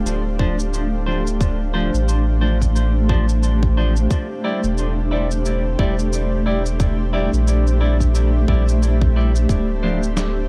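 A tight electronic kick and a muffled, pitched-down cabasa and snare set an 89 BPM groove in 4/4, swung on the sixteenths, in this hazy, spacious ambient dub excerpt in D minor. Beneath them, a deep, round sine sub bass sits up front and holds the low end with sustained, mellow notes. A granular cloud pad spreads blurred, detuned chords across the middle register, swelling in slowly and trailing off through its own built-in reverb. Clean, picked electric guitar stabs punctuate the mix, roughened by vintage 12-bit sampler grit and repeated through a dub echo. The harmony drifts from Dm7 to Em7b5 at 4.1 seconds and settles back on Dm7 at 9.5 seconds, all within a light room reverb.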